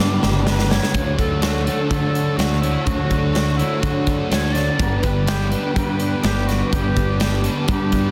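Blissful and wistful, this short shoegaze and dream pop excerpt opens with a drum fill from the big, punchy rock kit before settling into a G to Dmaj7 progression. A growling overdriven bass and a thick fuzz guitar with ensemble chorus carry the low riff. Above them, a slightly broken-up electric guitar adds reverse reverb, and a very quiet, shimmering twelve-string acoustic fingerpicks arpeggios. An airy, reedy flute sings the melody through tape echo while a swirling phased analog pad sustains chords in the background, all pressed into a dense, heavily limited, fairly dry modern master.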